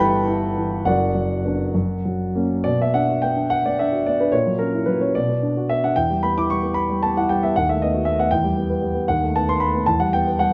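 A dark recording sets a concert grand piano up front in a moderate recital-hall reverb, its deep bass lending the sound real weight. This passage, taken from a longer romantic character piece for solo piano in B minor, moves in a rubato 6/8 at roughly 64-80 BPM, passionate and stormy in mood, with the instrument tuned slightly low to A4 = 437 Hz and ranging from F#1 to D6. After a brief opening phrase, a new section begins at 2.6 s, its harmony circling among B minor, E minor and dominant chords built on F# and B.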